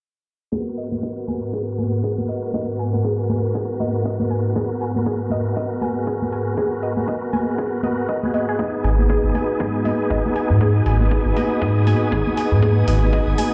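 An overdriven tonewheel organ sits up front with thick, gritty stabs, its fast rotary speaker, chorus vibrato and vintage sampler grit pumping against the sidechain under a low-pass filter sweep and delay. This smooth, warm deep house excerpt moves at 119 BPM in 4/4 with a 16th-note swing, set in G# minor over a G#m9 chord that shifts to B6/G# at 8.6 seconds. A woody, mallet-like synth pluck spins phased, tape-echoed arpeggios through its own filter sweep, while a warbling, nostalgic tape-like pad adds lo-fi detuned texture. In the background, a punchy analog kick and soft-handed ringing congas keep the groove alongside metallic, layered hi-hats. From 8.8 seconds a dark, sustained synth bass glides in up front with portamento, joined at 9.0 seconds by an airy, breathy pad holding bright sustained chords. The whole mix carries a lush hall reverb with a large studio sheen, as if played on a big sound system in a bare room.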